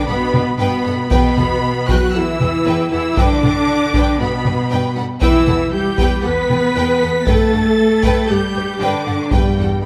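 Cinematic, epic orchestral film score in E minor at 117 BPM, this brief excerpt from a longer piece feels dark and relentless, moving in a steady, straight 4/4 as the harmony alternates between G and E minor. A warm first violin section carries the melody high in its range, its soft attack and smooth top bowed with expressive vibrato, while a second violin section adds a rich, focused line beneath it. A close violas section fills the accompaniment, and a lush, distant cello section and a background double bass section anchor the low end with smooth, even bowing. A mellow French horn section holds punchy sustained chords in the background, and solo taiko drums struck with heavy sticks drive the piece with a compressed, saturated weight from 0.3 seconds. A very quiet, close and dry timpani on E2 taps in briefly at 5.2 and 9.3 seconds, and the whole ensemble sits in a moderate scoring-stage reverb.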